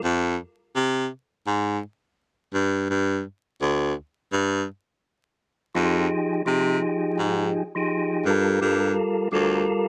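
Hip hop at 84 BPM with a swung 16th feel in F dorian, tough and gritty under vinyl crackle and a moderate studio reverb, where a clear, up-front baritone saxophone carries the low bass line with vibrato and a smooth top through the opening break and on until 9.6 s, while a mellow, dark, percussive tonewheel organ with fast rotary speaker, chorus vibrato, light overdrive, cassette tape colour and plate reverb sounds at 0.0 s and returns from 5.7 s over chords moving from Fm and G5 to Fm9 and Gm9 in this short excerpt.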